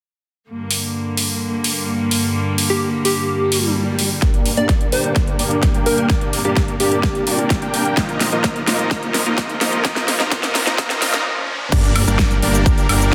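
A straight 4/4 pulse at 128 BPM drives this euphoric, anthemic festival progressive house excerpt in G minor, as a rich, earthy chamber string section pumps sustained chords from Gm to Ebsus2 beneath an overdriven big-room kit of huge snare, metallic hats, cabasa, crash and woodblock. A catchy, plucky square-wave lead with digital delay sings a short melody, a very quiet swell, riser and impact sit in the background, and from 4.2 s a huge, thick detuned supersaw riff joins a punchy overdriven kick through a build-up with a drum fill and a filter sweep. After a brief break, the drop lands at 11.7 s with a fat analog sawtooth bass on G1, all bathed in a lush hall reverb and a dense, heavily limited modern master.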